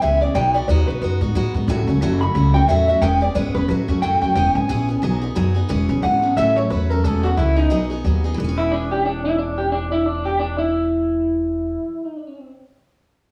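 A twangy, slightly broken-up electric guitar through a small old amp carries the melody up front, trailed by tape echo, in this upbeat, rollicking rockabilly passage at 179 BPM with a swung feel in E major. Beneath it, a bright, full-bodied steel-string acoustic guitar is picked in accompaniment while a woody, thumpy upright bass plucks out the low end, the harmony moving among E6, A6 and B6 chords. Light reverb lends a small-room feel to this section cut from a longer piece; the bass stops at 11.7 s, and the electric guitar is last to stop at 12.5 s.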